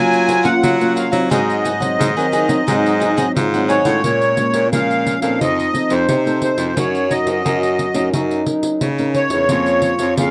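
A reedy, sweet accordion with light tremolo tuning carries the melody up front in this yearning, lively samba and choro passage, taken from a longer piece, while a breathy, mellow trombone with light vibrato sings a jazz-style second line in the background. A clear, punchy baritone saxophone plays the bass line, and a fingerpicked nylon-string guitar and a jingly pandeiro struck with hard hands fill out the accompaniment alongside a bright, crisp picked cavaquinho, which drops out at 4.0 s as the harmony turns to a minor key. The sound is a dry, close 1970s-style studio recording touched with light reverb.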